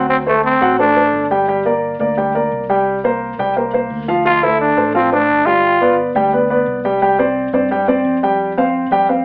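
Danceable and sunny, this salsa excerpt at 173 BPM puts a raspy, growling trombone up front, with vibrato, carrying the melody from 0.0 to 1.3 seconds and again from 4.3 seconds, over a grand piano accompaniment with short sustain moving through chords such as D7, Gm and Dm7 and a round, amped fingered electric bass, all heard from further back in a wet small room with an AM radio sound.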